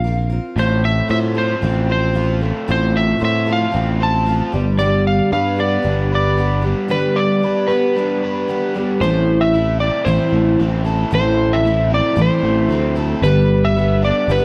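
Lightly reverberant digital ambience frames this nostalgic folk rock and heartland rock fragment at 114 BPM in a straight 4/4, where an up-front, slightly broken-up electric slide guitar played with fingerpicks carries the melody through analog delay over a shimmering, octave-doubled jumbo twelve-string acoustic and a round, direct picked electric bass, while a crunchy, double-tracked overdriven guitar riff with spring reverb joins at 0.6 s and the harmony moves from Bbsus2 through F/A and G to Am at 9.0 s.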